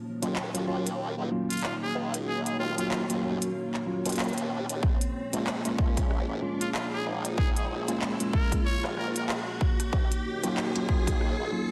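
A swung sixteenth-note groove in 4/4 drives this playful, funky glitch hop excerpt, which builds throughout beneath an electronic riser in the background. A glitchy drum kit of handclaps, clicky hi-hats and rim clicks sets the pulse with a tape-warm feel and studio reverb, and a punchy, overdriven electronic kick joins up front at 4.8 seconds. Underneath, a formant-sweep wobble bass blends detuned pulse and sine tones with chorus and tube saturation, while a deep, moody analog pad holds sawtooth chords with a slow attack, chorus and sidechain pumping. A clean tine electric piano plays stabs roughened by 12-bit sampler grit, low-pass filtering, digital delay and pumping, moving through Ebm7 and Bbm7. From 1.5 to 9.2 seconds a close-miked growling trumpet takes the solo melody, raspy and brilliant, with vibrato, scooped notes and digital delay. The mix sits in a lush hall ambience and is dense and heavily limited, with lossy compression artefacts.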